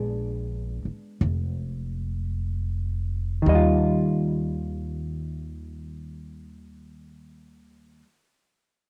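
A dark, clean hollow-body electric guitar with a cassette-tape tint and a woody, growly pizzicato upright bass open together, both up front, in this tender, romantic jazz ballad fragment in Eb major, which swings gently at 51-59 BPM and slows through its first 3.5 seconds on a Bb7b9 chord before settling onto Ebadd9, all captured as a home cassette recording with light reverb and small-room ambience.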